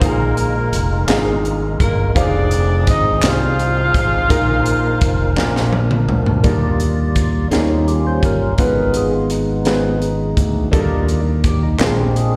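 Slow gospel in 6/8 at 56 BPM in Eb major, uplifting and reverent, caught as a live gig through the venue's PA with recital hall reverb. A dark, punchy horn section carries the melody up front with light vibrato and octave doubling, sounding roomy and distant, until 5.7 seconds. Group handclaps sit crisp and dry in the background from 1.1 seconds. A clear, boxy baby grand piano with short sustain plays accompaniment, and a fat, lightly overdriven tonewheel organ with key click and third-harmonic percussion holds sustained chords through a fast rotary speaker. A bright, punchy fingered electric bass and a crisp fusion drum kit with a high-tuned snare and pumping small-room sound drive the groove, and a drum fill at 5.4 seconds leads into an organ solo from 6.4 seconds. The harmony moves from Bb7sus4 and Fm7 to Ebmaj7, Eb7 and Abm6 before closing on Bb7, where the handclaps briefly return.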